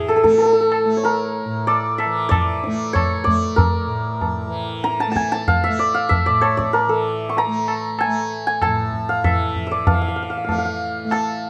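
A mellow, hammered santur rings up front over a bright, buzzing tanpura drone and low-tuned tabla with a small-room sound in this meditative, devotional Hindustani classical excerpt in 5/4, closely and finely recorded with light reverb, with a new section starting at 9.9 seconds.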